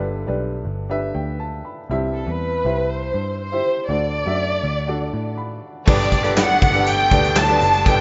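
A woody, boxy upright piano and a dark, round muted electric bass open this uplifting piano-driven pop excerpt in G major at 121 BPM, with the piano adding short fills as the chords move from G to C to D. A lush, expressive violin section takes the melody up front from 2.2 s. At 5.9 s, a punchy, big-room arena drum kit with handclaps and crash arrives on a Gadd9 chord, along with a bright, overdriven guitar riff and a barely audible jingly tambourine, all set in moderate plate reverb within a rough home-demo mix with a muffled top end.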